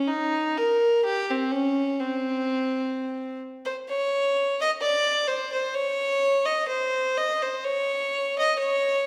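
A lone bowed fiddle with a nasal, reedy gut-string tone opens this jolly, bouncy alpine folk fragment at 127 BPM in 2/4, played up front with a light swing and rubato feel, shifting into a new section at 3.9 seconds, all set in the lush reverb of a church or concert hall.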